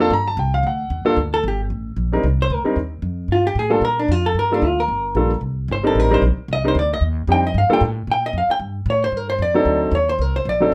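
A fast swing at 226 BPM in 4/4 drives this smoky, moody small-group jazz excerpt in G minor, drawn from a longer piece. A warm, intimate grand piano with audible action noise and long sustain comps alongside a woody, growly pizzicato upright bass from the start, while a dark, clean, compressed hollow-body electric guitar enters at 1.3 seconds to take a picked solo through minor chords that close on D7b9. Every part sits up front in a moderate studio ambience.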